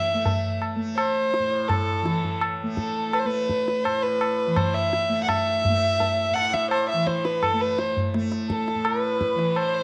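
Longing and meditative, this short Hindustani classical fragment moves at 84 BPM in a straight 4/4, with a dark, woody solo violin carrying the melody up front, its bowed tone boxy and touched with light vibrato. Beneath it a softly plucked tanpura sustains a buzzing, shimmering drone throughout, while a high-tuned tabla with a short ring enters at 0.3 seconds, close and dry. The whole sits in a moderate echo-chamber reverb alongside a small-room ambience, and the piece is tuned slightly sharp, to A4 = 443 Hz.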